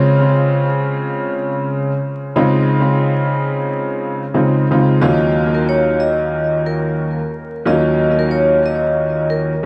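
Dark and reflective, this brief fragment of a longer hip hop piece moves with a lazy, swung sixteenth-note feel. A woody, slightly detuned upright piano sits up front as the accompaniment from the start, its worn tone carrying a long sustain and trails of tape echo, and the opening stretch through 2.4 seconds forms a break. At 5.0 seconds a vibraphone struck with hard mallets takes up the melody in a narrow upper register, its metallic, ringing notes shimmering with a slow motor vibrato and its own tape echo. The harmony shifts from a Dbmaj7 chord to Ebm7 as the vibraphone arrives, deepening the pensive colour. A plate reverb, an echo-heavy mix and a bed of vinyl crackle give the sound a dusty, nostalgic haze.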